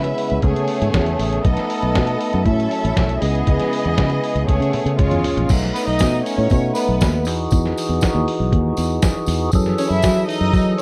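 A dark, round fingered electric bass sits up front and punchy in this sultry, driving disco cut at 119 BPM, with a muffled, compressed sampler-style drum kit (thumpy kick, medium-tuned snare, hi-hat, crash and toms) and a lightly overdriven, fat tonewheel organ holding sustained chords through a slow rotary speaker. A lush, smooth bowed violin section with vibrato carries a second line over chords such as Amaj7/C#, B7 and C#m7, before a drum fill from 4.5 to 5.5 s leads into richer B9, Emaj9 and F#m9 harmony. At 5.5 s a bright, jingly tambourine joins from a distance in a large room, while the rest of the dry, close mix stays intimate.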